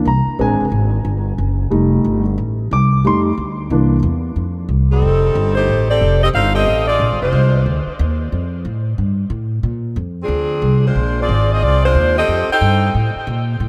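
Soaked in a dreamy, cavernous reverb, this brassy, energetic big band swing fragment opens with an intimate concert grand piano, its action noise audible, playing ninth chords, the first voiced rootless, over a woody pizzicato upright bass until 4.0 seconds, after which a tight saxophone section with light vibrato and a touch of delay carries the melody in two phrases from 4.9 and 10.2 seconds while the bass continues beneath.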